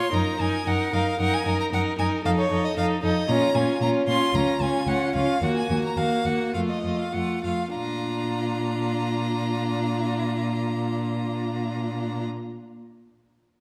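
Bathed in a reverberant recital-hall ambience, this stormy, dramatic excerpt from a quick classical-period string quartet movement unfolds with rubato, easing back between 2.2 and 7.7 seconds before a new section arrives at 7.7 seconds, as a clear, smooth first violin carries the melody with light vibrato above a rich, focused second violin line, a warm, even viola accompaniment, and a cello bass that enters at 0.1 seconds with soft attacks and expressive portamento.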